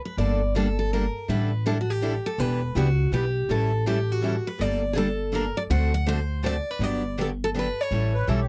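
A dry, close 1970s-style studio sound frames this short, charming and playful jazz manouche waltz at 163 BPM in 3/4 with a swung feel, where an up-front picked steel-string guitar with a full-bodied dreadnought tone carries the melody between F#4 and F#5, two more guitars accompany (one with audible finger squeak, the other a parlour guitar set in the background), a thumpy, woody gut-string upright bass anchors the low end, and a sweet, reedy accordion with light tremolo tuning slips in only at 8.1 seconds, all over chords moving through Gmadd9, A9sus4, Em7, A6, D7, Gmaj7 and A7.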